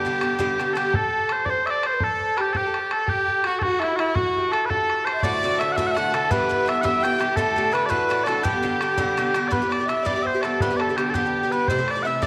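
Mellow, sweet small bagpipes carry the melody up front with vibrato and a slapback echo in this bright, lively Celtic jig in 6/8, a fragment cut from a longer tune. A single clear, smooth fiddle and a ringing fingerpicked harp set further back play second lines beneath it, while a metallic, double-strung bouzouki drops out at 0.9 seconds and returns at 5.2 seconds. A boomy, open bodhran drives the rhythm, and the whole mix sits in a wet echo-chamber reverb.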